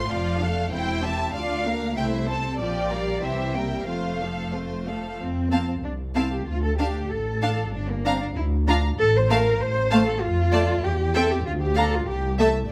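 Set in a moderate recital-hall reverb, this string orchestra has a lush sound, with the cello and double bass sections sitting up front. It is a graceful, cheerful classical-period movement in F major at 96 BPM in 2/4: the expressive first violins carry the melody over a focused, close second violin line, smooth and even violas, a rich cello bass with portamento and a soft-attacked double bass, every section bowed with vibrato. Cut from a longer piece, the excerpt settles on F at 3.9 s before a second passage begins at 5.2 s, moving through Dm, Gm7 and F/A.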